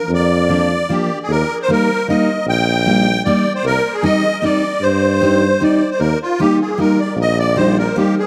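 Bouncy and festive, this short alpine folk dance in 3/4 is cut from a longer piece and set in a dreamy mix soaked in plate reverb. A reedy, shimmering musette accordion carries the melody up front with a diffuse ambient delay, while a present, classical-style tuba holds the bass with a warm tone. A fingerpicked jumbo steel-string acoustic guitar fills in full-bodied accompaniment through a lush chorus, as the harmony moves from Bb to Eb, Cm and back to Eb.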